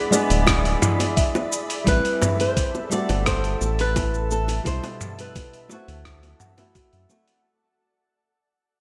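This blissful, smooth sunset chillout excerpt opens with a fingerpicked flamenco guitar melody roughened by vintage 12-bit sampler grit and delay, over thumb-plucked classical nylon-string guitar with digital delay and a shimmering, ethereal pad with chorus. A woody kalimba plays arpeggios with digital delay in the background, while a gritty, tape-warm sampler-style kit of hi-hat, rim click, shaker and toms sits up front in gated reverb, joined by soft-handed, low-tuned bongos, a deep, dark analog bass and a thumpy electronic kick from 0.5 s. The passage fades out across its 7.4 seconds, set in a moderate plate reverb with bright 1980s-style digital production.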